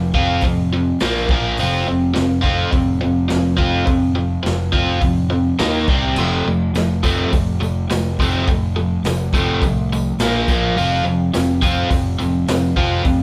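Swaggering and raw, this garage rock excerpt is driven by a bright, double-tracked overdriven guitar riff up front over a fuzz-soaked picked electric bass and a gritty, saturated drum kit with dark cymbals and a punchy kick. A jingly tambourine joins in the background at 6.2 seconds, and the whole band sounds live together in one room with a moderate large-studio reverb.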